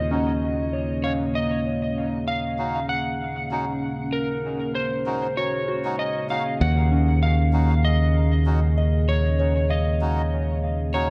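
An echo-heavy, lightly reverberant mix with a studio-ambience feel opens this meditative, spacious ambient excerpt, set at 97 BPM in 4/4 with a gentle sixteenth-note swing, resting on an Ebm7 chord in Eb minor. A slightly broken-up electric slide guitar carries the melody through dub echo, over a deep, moody pad of detuned sawtooth and sub-octave sine sustaining chords with chorus, while a soft, pure FM synth bell sits in the background playing arpeggios under a filter sweep that runs through the whole 11.1 seconds. Up front, a bright, growly fingered electric bass holds Eb, and a reedy, nasal melodica adds low-passed stabs with dub echo from 0.1 seconds.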